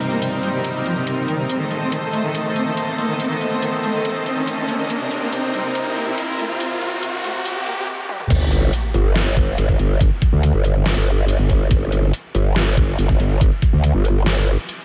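A growling, saturated wobble bass takes over at 8.3 seconds, up front and thick with overdrive and chorus, as this heavy wobble dubstep fragment drops into its chaotic, aggressive half-time groove at 141 BPM. Before that, the build-up pairs a dark, woody solo cello melody with vibrato, roughened by vintage 12-bit sampler grit and a diffuse ambient delay, with a lush supersaw pad holding sustained chords over Cm7 and Adim. The pad's bright, detuned unison carries a subtle chorus and pumps against the sidechain. A riser and sub drop sit in the background through the build, and a brief stop and drum fill lead into the drop, where an overdriven, knocking electronic kick joins. The dubstep kit runs throughout with a deep snare, metallic hats, crash and toms, re-recorded in a small room. The mix is dreamy and soaked in a huge ambient reverb, shaped by a high-pass filter.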